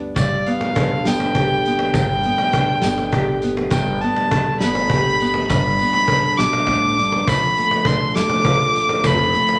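A dark, boxy fiddle stands out up front, one bowed player carrying the melody with light vibrato and portamento from 0.2 s. Beneath it, a small fingerpicked nylon-string guitar plays the accompaniment, and a thumpy pizzicato upright bass with gut strings sits in the background. The music is reflective, intimate acoustic folk for a duo or small band, in a straight 6/8 at 68 BPM counted in dotted quarters, with the harmony moving from G to Dm/F at 7.3 s. The percussion is layered: a loose indie drum kit in a pumping studio room, with a punchy kick, a medium-tuned snare and a rolled-off top, sits in the background alongside a distant cajon played with hard hands and faint snares, and a close, jingly tambourine. A wet large studio reverb of 0.9 s gives the ensemble space in this short cut from a longer piece.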